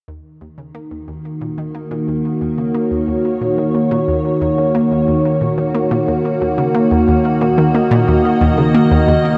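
A straight 4/4 pulse at 90 BPM drives this ambient, sequencer-driven space music in Eb minor, tuned slightly flat to A4 = 437 Hz. An analog pluck starts at 0.1 seconds with a riff low in the register, its detuned sawtooth and square tones given a snappy filter pluck, a noise layer, chorus and delay, and the synth arpeggio fades in across the whole 9.4 seconds. From 0.8 seconds an evolving wavetable pad sits up front, holding sustained chords on a single Ebm7 with a mellow, morphing blend of triangle and sine waves, slow attack, chorus and its own built-in reverb. A huge, dark ambient reverb with a 6.9-second tail washes over the production, lending a mysterious, expansive mood. This brief section is cut from a longer piece.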